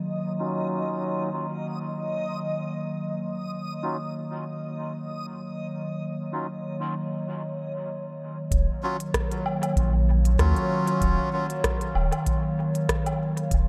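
Ambient dub at 96 BPM in Eb minor, this meditative, spacious excerpt opens on a warbling, nostalgic tape-like pad holding a dark Ebm9 chord under a filter sweep. It is joined by a reversed, dreamy swelling texture that ends by 7.3 seconds and by reedy, breathy melodica stabs, low-passed and treated with dub echo. At 8.5 seconds a round, up-front analog bass, a deep tape-warm electronic kick and a lightly swung kit of crisp hi-hats, rim clicks and woodblock settle into the groove, the kit filtered, echoed and re-recorded in a large room.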